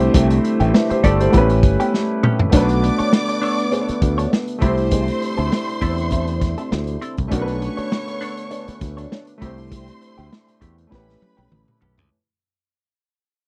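Lush 1970s-style soul at 100 BPM in B phrygian, smooth and cinematic, cut from a longer piece: a muffled, lo-fi vintage drum kit with tight kick sits up front beside a growly, punchy fingered bass and an intimate concert grand piano with audible action noise, while a clean, compressed semi-hollow guitar plays a wah riff, a dark French horn section holds distant chords in the background, and a lush string section with portamento enters at 2.5 seconds as the track fades out over a drum fill closing at 12.1 seconds, all in a dry, close studio sound.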